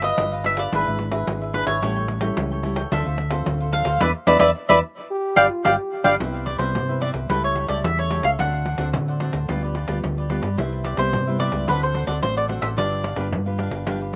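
A festive, joyful blend of samba and choro opens at once with a full group: a round, double-strung mandolin carries the picked melody up front, while a crisp cavaquinho and a full-bodied, fingerpicked classical nylon-string guitar supply the accompaniment underneath. A dark, punchy hollow-body electric bass sits forward in the mix with an amped tone, and a jingly pandeiro played with soft hands keeps the straight 4/4 pulse going. Slapback echo touches the mandolin and cavaquinho, and the whole cut has light reverb and an open, outdoor sound. The band hits an accent from 4.0 seconds, and at 5.1 seconds a mellow, jazz-style trombone slips in briefly with scooped notes and light vibrato as a second line before the music moves into its next section. The mandolin drops out at 13.3 seconds while the rest of the group plays on, and the clip ends as part of a longer piece.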